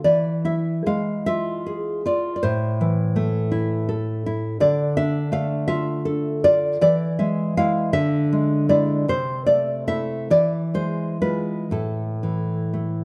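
A fingerpicked nylon-string guitar plays alone and up front, its dark, acoustic classical tone carrying an audible finger squeak as it moves through a romantic, wistful passage in 6/8 with free rubato. The harmony drifts from E through Am and Dm, touching E7/D and Am/C before resting on an A5 chord near 11.7 seconds. A moderate recital hall reverb surrounds the intimate, warm-sounding playing in this short excerpt from a longer piece.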